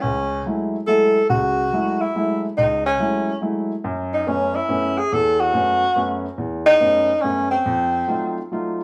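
From the opening moment, a tenor saxophone and a grand piano sound together in a swinging jazz waltz at 142 BPM, its intense, searching mood set in F# dorian and tuned slightly below standard pitch. The saxophone carries the melody up front as a soloist, its mellow tone shaped by soft attacks and vibrato, yet it also sounds distant and roomy. Beneath it, the piano accompanies with a warm, intimate, natural character, its long sustain carrying chords from F#m9 through Aadd9 to F7b9, with the mechanical noise of its action audible. The two play live in a large studio whose moderate reverb lends the pair a sense of space. This brief section, cut from a longer performance, ends with the saxophone stopping at 8.5 seconds and the piano continuing until 8.8 seconds.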